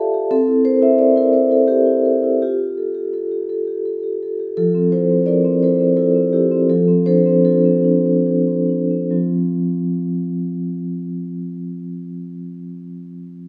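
Contemporary classical for solo vibraphone in F major and 3/4, flowing and warm with a rubato feel between 68 and 89 BPM, the up-front vibraphone played with medium mallets sounding dark, smooth and ringing with medium motor vibrato across a range from F3 to A5, slowing from 3.5 to 9.1 seconds as the harmony moves from C7 through Fadd9, Fmaj7 and F6 to an open F5, all set in a moderate recital hall reverb in this short cut from a longer piece.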